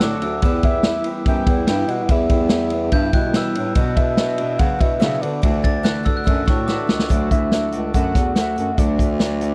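A vintage drum kit with a punchy kick and dark cymbals, sitting up front, drives this breezy, bright jangly indie pop excerpt at 144 BPM in D major, joined from 0.6 s by a round, detuned octave-layered synth lead carrying the melody with chorus and tape echo, over a woody, shimmering picked twelve-string acoustic guitar, slightly broken-up electric guitar arpeggios with lush chorus tucked in the background, a clear bass clarinet with vibrato and subtone on the bass line, and a bell-like glockenspiel second line that stops at 7.1 s, captured in a dry, close 1970s-style small room.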